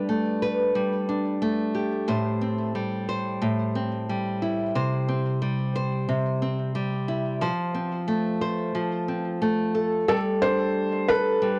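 A fingerpicked nylon-string guitar, small and up front with vintage 12-bit sampler grit and tape echo, carries this intimate, wistful folktronica fragment through arpeggios over a lightly swung 4/4 until a soft, felt-muted upright piano, mellow and full of audible action noise, slips in with a brief tape-echoed melody at 10.1 seconds, all captured in a dry, close 1970s-style studio sound with light reverb.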